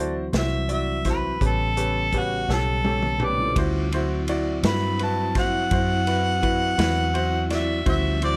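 A short, roomy slice of slow blues in 12/8, cut from a longer piece, with light reverb and a rollicking, soulful mood. A clear, slightly worn grand piano plays accompaniment while a soft, flute-like tonewheel organ holds sustained chords in the background through a slow rotary speaker. A dark, round, foam-muted electric bass anchors the low end, and a vintage drum kit with dark cymbals, a punchy kick and a rolled-off top enters at 0.3 seconds, rolling through a fill from 2.5 seconds. An overdriven harmonica with light vibrato and scooped notes carries the melody from 0.4 seconds, sounding distant yet up front in the mix. At 3.6 seconds the harmonica opens into a jazz-tinged solo over a D9 chord.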